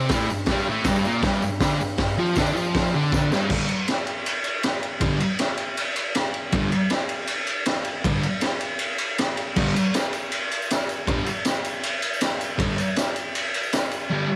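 A thick, double-tracked fuzz guitar opens on a G5 chord and drives a menacing, raw garage rock riff in G minor at 158 BPM, pushed up front beside a gritty kit with a boomy kick and a high-tuned snare, recorded onto cassette in a small, dry room, while a jingly tambourine sits in the background until 3.5 seconds, drops out after a drum fill, and returns at 9.7 seconds in this short excerpt.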